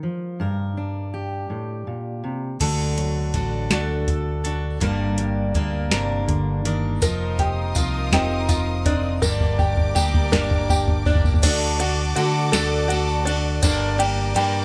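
Bittersweet and stirring, this indie folk passage in G minor moves in a slow, straight 6/8 at 54 BPM, opening with a dark, full-bodied fingerpicked acoustic guitar up front. At 2.6 seconds a second, picked acoustic guitar, a round, punchy electric bass and a soft vintage rhythm box with a deep kick, crisp snare and overdriven metallic hats join as the arrangement builds, with a drum fill running through the build-up. At 7.0 seconds a lush, woody string section with vibrato, a plunky, twangy open-back banjo playing arpeggios and a jingly, distant tambourine fill out the sound, while the first guitar drops out at 9.2 seconds.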